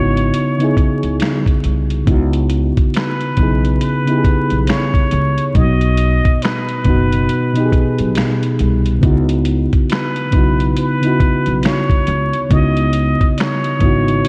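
Lo-fi hip hop at 69 BPM in C# minor, nostalgic and reflective, with a breathy, wah-wah plunger-muted trumpet singing a jazz-style solo line with light vibrato and scooped notes over reedy, cassette-tinged electric piano chords moving from C#m11 to G#m7 and back, a woody pizzicato upright bass, and a muffled, gritty sampler drum kit of thumpy kick, snare, hi-hat and finger snaps that enters at 0.2 s, all swung and soaked in lush hall reverb and vinyl crackle.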